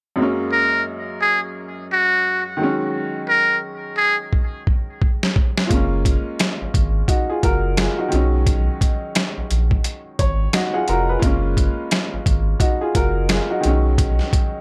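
Nostalgic, swung boom-bap hip-hop at 87 BPM in F# major, cut from a longer piece, where a clear, woody upright piano carries the chords beneath a buzzy, breathy muted trumpet melody with light vibrato, plate reverb and analog delay that ends at 4.2 seconds, before a gritty, compressed sampler-style drum kit with a thumpy kick enters on a fill at 4.3 seconds, a deep, round dub sub bass joins at 5.7 seconds, and the piano later takes a fill of its own.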